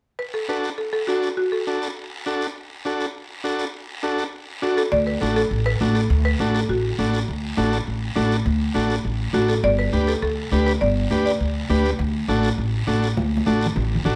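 A buzzing, woody marimba struck with hard mallets plays sunny melodic phrases over a raspy, distant guiro and a buzzy vintage combo organ with light vibrato in this festive cumbia excerpt, and at 4.9 s a thumpy pizzicato upright bass with gut strings and bright, high-tuned congas join, with a drum fill arriving at 13.2 s, all set in a moderate large studio reverb with a dark, warm production.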